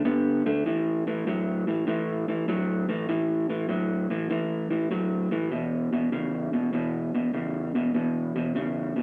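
A solo electric guitar, played through a small old amp, opens on a D5 chord, moving to A5 at 0.7 seconds and E5 at 5.5 seconds in this gritty, rollicking A major blues at 99 BPM with a swung eighth-note feel. The fingered tone is dark, slightly broken-up and compressed, sitting up front in a lo-fi sound, with the low register reaching from E2 to B3. A wet, large studio reverb surrounds it, giving the sense of a live performance in one room, and the passage is cut from a longer piece.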